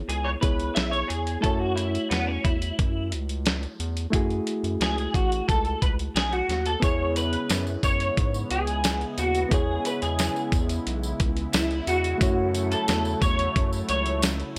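The recording sits in a digital ambience, with the drums and guitar placed up front in a short cut from a longer laid-back, nostalgic indie and bedroom pop piece at 89 BPM in a straight 4/4, in E major. A dusty, sampler-style soul drum kit, compressed and gritty with a thumpy kick and a medium-tuned snare on hi-hat, kick and snare, sounds re-recorded in a small room. Beneath it, a round, deep analog bass holds a mellow, sustained low end, while a worn, reedy electric piano, slightly out of tune and heard through built-in speakers, carries cassette-tape colour. An electric guitar through a small old amp, bright, twangy and slightly broken-up with ensemble chorus and vibrato, plays a picked solo across the whole passage over chords that move between E6 and F#m7. At 6.8 seconds a smooth, detuned sawtooth pad with chorus and a soft attack adds warm sustained chords, and a jingly acoustic tambourine joins in the background.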